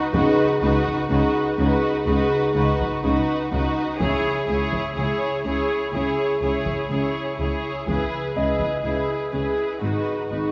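A cinematic suspense film score cue in C# minor, this short excerpt moves at a slow 62 BPM in a straight 4/4 and carries an uneasy, eerie mood. Muted violin, viola, cello and double bass sections play con sordino throughout, their bowed tone dark and veiled with vibrato, the violins carrying a lush melody above a second violin line and a soft-attacked viola accompaniment. Beneath them the cellos and basses hold the low end, the cellos close yet sitting in the background and the basses more distant. A ringing, fingerpicked concert harp riff is the most prominent voice, while a clear, vintage-toned grand piano adds a short-sustained texture in the background. A taiko ensemble struck with heavy sticks sounds close and dry from 0.1 s until 9.5 s, set against moderate scoring stage reverb as the harmony drifts from B/C# to C#m and closes on G#m7 at 9.8 s.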